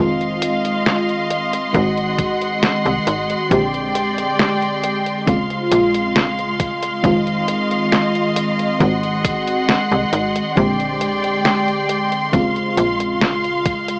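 A clear, smooth symphonic string section sits up front with light vibrato, holding sustained chords over a dreamy FM electric piano with a soft pad layer, its lush, detuned tone shimmering through tremolo, analog chorus and analog delay. Beneath them a slap-like FM bass gives snappy, metallic attacks, while a detuned 8-bit drum machine with an up-front snare and hi-hat comes in at 0.2 seconds and a thumpy electronic kick joins at 1.7 seconds. The hazy, melancholic vaporwave passage is cut from a longer piece, cycling through Fm7, Ab7, Bb13 and Eb13sus4 in a rough home-demo mix with a cassette-tape, small-speaker sound and light reverb.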